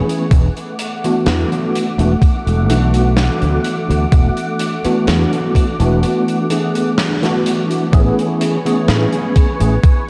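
Nostalgic and dreamy, this slow vaporwave fragment at 63 BPM drifts over a growly, up-front fretless bass with lush chorus and a thumpy, overdriven electronic kick, while a big rock drum kit adds hi-hat and a medium-tuned snare with a rolled-off top. A clean tine electric piano with ensemble chorus and analog delay carries the accompaniment, and a silky, slow-attack string machine treated with phaser holds sustained chords above, all set in light small-room ambience with a cassette tape sound. The harmony rests on E9sus4, the band hits an accent at 7.0 seconds, and the music moves to Amaj9 at 7.9 seconds.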